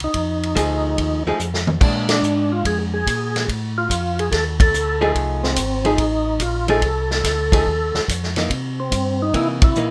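A rough home-demo sound with moderate studio reverb frames this swinging, greasy soul jazz organ trio fragment at 144 BPM in F mixolydian, where a gritty, overdriven tonewheel organ with second-harmonic percussion and slow rotary speaker carries the melody up front, a round, dark tonewheel organ with chorus vibrato holds the bass, a punchy, natural-sounding vintage kit with a rolled-off top drives the swing with a fill at 1.4 seconds and band accents from 2.0 seconds, and a clean, compressed hollow-body archtop guitar joins the accompaniment at 0.6 seconds over F7#9, Bb7 and C7#9 changes.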